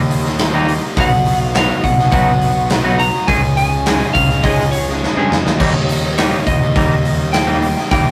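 Upbeat and carefree, this indie rock excerpt moves at 104 BPM in a straight 4/4, with a big-room acoustic drum kit up front, a growling overdriven bass, and a biting guitar riff sitting in the background while a very quiet, buzzy combo organ holds sustained chords under heavy vibrato. A clean, twangy guitar riff joins at 0.5 s and a lightly driven, compressed lead guitar carries the melody from 1.0 s, over chords moving from Eb through B and Dbadd9, with a drum fill at 5.0 s leading back to Eb. The rough rehearsal-room sound has tube saturation and moderate reverb.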